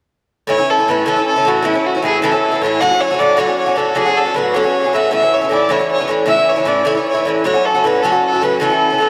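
A nasal, reedy gut-string fiddle carries the melody up front with an analog delay, alongside a picked, metallic, double-strung acoustic Irish bouzouki accompaniment, both playing from 0.5 to 9.1 s, in a lively, rollicking Celtic jig at 103 BPM in 6/8 and A major that alternates A and F#m chords, all soaked in a huge, dreamy ambient reverb in this short cut from a longer piece.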